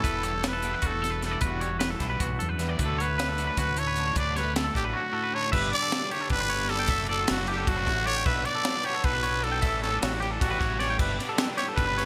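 Bright and playful, this short excerpt of math rock and midwest emo races along at 307 BPM in 7/8, in D major, led by an up-front, raspy trumpet with vibrato and scooped notes, its melody carried through digital delay. Beneath it, a twangy clean guitar picks arpeggios, a double-tracked overdriven guitar drives a crunchy riff through lush chorus, and a punchy, overdriven fingered bass growls low, while a bright twelve-string guitar with ensemble chorus sits in the background until 6.9 seconds. A crisp fusion kit with a high-tuned snare, tight kick, hi-hat, ride and crash adds gated reverb, all framed by small-room ambience and a bright 1980s-style digital sheen as the chords shift from Em11 and Dmaj7 toward G, Bm11 and A7.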